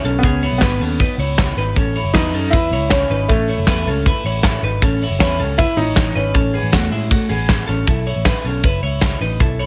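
Jangly indie pop at 157 BPM in a straight 4/4, this breezy, bright excerpt from a longer piece rides on compressed, twangy twelve-string electric guitar arpeggios and an intimate, woody, slightly detuned upright piano melody with audible action noise, both colored by analog delay, until the piano drops out at 7.5 s. Underneath, a dark, round, foam-muted picked electric bass and an up-front, big-room acoustic drum kit with a tight kick, medium-tuned snare, hi-hat and a rolled-off top carry the song. The harmony moves from C#sus2 to A6 before shifting to B7sus4 at 7.9 s, all within a light reverb.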